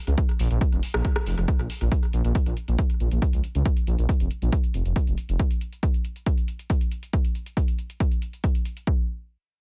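A dry, echo-heavy mix opens this short cut from a longer driving peak-time techno track in Bb minor, relentless and industrial at 138 BPM in a straight 4/4, tuned to A4 = 439 Hz. An overdriven electronic kick sits up front, with an analog drum machine supplying hi-hat and rim click through overdrive and tape echo. A thick, menacing detuned saw bass, saturated and sidechain-pumped, moves under a filter sweep until it drops out at 5.4 seconds.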